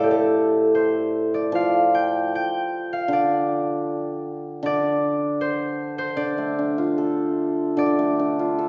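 Bathed in a wet scoring-stage reverb and heard from further back in the room, this graceful, wistful fragment of Chinese traditional chamber music has a rubato feel, with a warm concert harp carrying the fingerpicked, ringing melody up front while a hammered dulcimer shimmers beneath it in low-to-middle accompaniment throughout.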